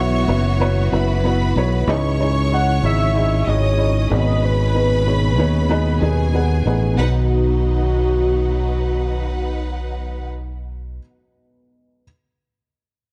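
A growly, punchy fingered electric bass sits up front in this anthemic, warm pop excerpt, moving at 94 BPM in a straight 4/4 in B major. Above it, a velvety synth lead with a fast attack and sustained tone carries the melody with vibrato and a chorus effect, while a rich symphonic violin section plays a focused, lush second line. A felt-muted upright piano supplies soft, intimate accompaniment with short sustain and audible action noise, and a studio string section holds smooth, even chords in the background. The harmony moves from Bsus4 through C#madd9 and G#m before settling on B at 7.0 seconds, where a new section begins. The lead, violins and strings stop at 10.3 seconds, the bass at 11.0 seconds, and the piano plays alone until 12.0 seconds, all within a dark production with light reverb and a small room ambience.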